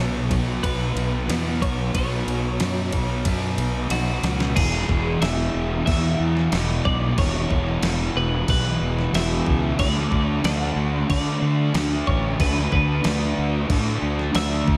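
A steady, straight 4/4 pulse at 92 BPM anchors this wistful, dreamy rock cut drawn from the shoegaze and dream pop vein, a portion lifted from a longer piece. A crisp 8-bit digital drum machine enters at 0.3 seconds with a thumpy kick, fat snare, crash and ride cymbals, its sampler-style sound tape-toned and re-recorded in a large room yet sitting up front, and it plays a fill from 3.9 to 4.6 seconds that leads into the second section. Around it, a thick, dark fuzz guitar, double-tracked and placed up front, drives a distorted riff through a lush chorus, while a fuzz fingered electric bass holds the low end with an overdriven, amped growl. Floating above, a bright, clean twelve-string electric guitar carries the melody with a twangy, compressed tone and an analog delay, sitting further back in the blend. The harmony moves from Bsus2 to E5 and then D5, and the whole dreamy mix is soaked in a moderate hall reverb that gives it a hazy, enveloping glow.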